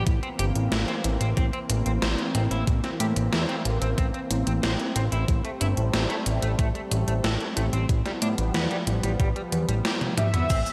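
Bathed in a lush hall reverb, this moody, driving synthwave fragment sets a thick, airy unison pad with chorus, phaser, shimmer and sidechain pumping against a bright, clean picked electric guitar riff wrapped in analog chorus, slapback echo and delay. Underneath, a fat, saturated analog bass sits up front beside a thumpy, overdriven electronic kick and a gated 80s digital drum machine, whose gated-reverb snare, hi-hat, cabasa, crash and toms roll into a drum fill at 10.0 seconds. The harmony moves from C7 to Am7 to G7/A, and a round, dark synth brass enters on a single held note at 10.2 seconds.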